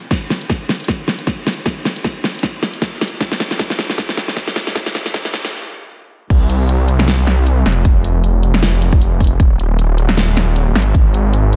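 A swung, half-time future bass groove with an emotional, dreamy mood opens on a punchy layered electronic kick and an up-front pop kit of crash, hi-hat and fat snare, as a drum fill and a filter sweep drive a build-up to a brief stop at 5.5 s before the drop at 6.3 s brings in a thick, detuned sawtooth bass with chorus and sidechain pumping, all set in light reverb within a dense, heavily limited modern master.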